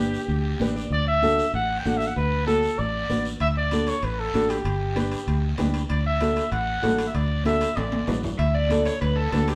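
A straight 4/4 cumbia pulse at 193 BPM drives this festive, joyful latin excerpt in D major. A punchy, vintage trumpet with vibrato solos up front over G and D chords, backed by dark, fingerpicked nylon-string guitar with finger squeak, a round, foam-muted electric bass, raspy guiro and bright, high-tuned congas. Ringing, saturated metal-shell timbales join at 3.4 s, and a drum fill hands off to a twangy, slightly broken-up electric guitar with spring reverb, which takes the melody at 8.4 s, the band heard playing live together in one room with wet studio reverb.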